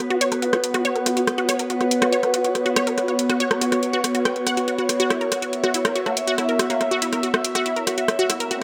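A straight 4/4 pulse at 141 BPM drives this alien, psychedelic trance excerpt, with an overdriven, up-front electronic drum kit of bright hi-hats and rim clicks paired with a punchy, detuned unison sawtooth pluck riff that enters at 0.1 s and sits close with digital delay. Alongside them, an evolving wavetable pad morphs through sustained, ring-modulated chords with phaser and its own reverb while a filter sweep runs through the ambient pad, and an airy, breathy pad adds soft chorused texture. A squelchy, resonant blip pluck surfaces briefly in the background at 6.1 s, and a faint electronic riser appears at 8.3 s, all within a moderate digital room reverb.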